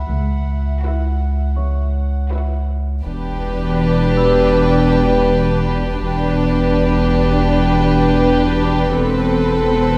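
A straight 4/4 pulse at 81 BPM carries this eerie, mysterious suspense cue, cut from a longer cinematic score and settling into E minor at 3.1 s. Throughout, a deep, round sine sub bass drones up front beneath sul tasto cellos and background double basses, a delicate, bell-like celesta glints softly behind, a pure warm violin texture ends at 2.6 s, and from 0.8 s dark, intimate violins hold a single B4 melody over a floating, distant second violin line and a smooth-topped viola accompaniment, all bowed with soft attacks and heard from further back in a wet scoring-stage reverb as the harmony moves from Bsus4/C# to Em7 and on to Amadd9/E.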